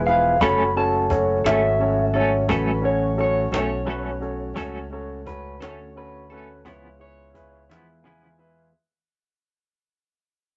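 A smoky, soulful slow blues in 12/8 at 58 BPM in F# minor, this short excerpt, cut from a longer piece and fading out throughout, moves from F#m to a C#7#9 at 6.7 seconds. A picked, slightly broken-up guitar through a small old amp carries a second line over an up-front semi-hollow guitar with tremolo and a clear, polished baby grand piano, while a mellow tonewheel organ with slow rotary speaker, light overdrive and chorus vibrato holds dark sustained chords in the background. A round, punchy fingered electric bass and a woody cajon with faint snares anchor the groove, and the piano adds a fill from 7.7 seconds into a brief break, all in a rough rehearsal-room sound with light reverb.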